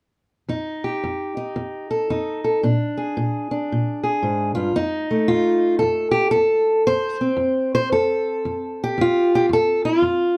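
A swung 4/4 groove at 114 BPM drives this short excerpt of soulful, swaggering acoustic country blues in F mixolydian. A lone fingerpicked steel-string acoustic guitar, with a parlour-sized tone, sits up front from 0.5 to 10.4 seconds, ranging from F2 to C5 and moving from F7 to Bb7 before returning to F7 at 4.8 seconds, with finger squeaks audible along the way. Light reverb and a dark, warm production give the guitar an intimate, close feel.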